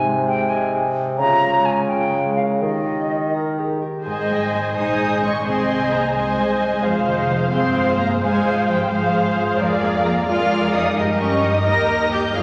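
Dramatic and restless, this classical passage in a straight 6/8 is cut from a longer piece and opens with a small woodwind trio over a ringing concert harp. A silver flute, airy and up front, and a mellow clarinet set in the background carry second lines, while a distant, roomy bassoon with light vibrato supplies the accompaniment. The fingerpicked harp arpeggios run through the whole passage, spanning from low in the bass to high in the treble. At 4.1 seconds the woodwinds give way to the strings: an expressive, up-front violin section with dark tone, soft attacks and portamento takes a second line, a lush viola section fills in the accompaniment, and a double bass section anchors the low end. Moments later a distant, even violin section enters with the melody over a focused, close cello section, and a wet scoring-stage reverb gives the ensemble a full, spacious sound through to 12.4 seconds.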